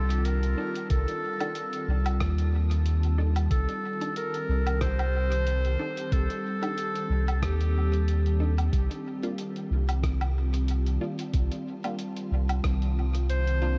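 A loose 4/4 groove at 92 BPM with a light 16th-note swing carries this hazy, deep ambient dub fragment in C dorian, where muffled, pitched-down sampler-style hi-hat, rim click and woodblock with dub echo sit behind a thumpy background kick, a round, up-front sub bass anchors the low end, a calm, detuned organ-like pad with ensemble chorus sustains Cm69 before shifting to Bb/C at 8.7 seconds, a phased, wave-folded chord stab flickers in the background, and a clear, smooth classical clarinet sings the solo melody through dub echo until 8.4 seconds, returning briefly at 13.3, beneath a layer of vinyl crackle.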